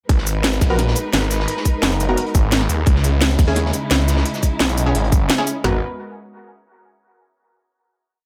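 Dark and tense, this short technical drum and bass piece in G# minor at 173 BPM pits a snarling, distorted, detuned saw bass that growls up front in chopped phrases against lush, bowed symphonic strings holding sustained chords, while two tight, layered electronic drum kits with a woody snare, cracking snare, crisp hats and shaker drive a broken beat over a gritty, saturated breakbeat loop in the background, and sparse, punchy orchestra-hit-like synth stabs with cassette tape colour and dub echo enter at 0.7 seconds before the drop gives way to a final chord at 5.6 seconds.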